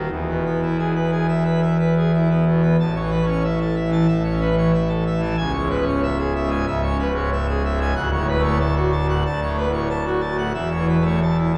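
A solo pipe organ on full registration dominates this brief, jubilant classical toccata fragment, its mixtures lending a brilliant, majestic edge to a romantic voicing that spans C#1 to A5. The music moves at 92 BPM in a straight 4/4 in A major, tuned to A4 = 441 Hz. An opening passage gives way at 2.8 seconds to a second section, with the harmony moving from E through A, C#m and Dmaj7 before settling on A/E near 10.6 seconds. The organ sits forward in the balance, while the listening position is set further back in a church whose reverb rings for about 3.0 seconds, lending the sound a spacious bloom. Cut from a longer piece, the fragment ends at 11.6 seconds.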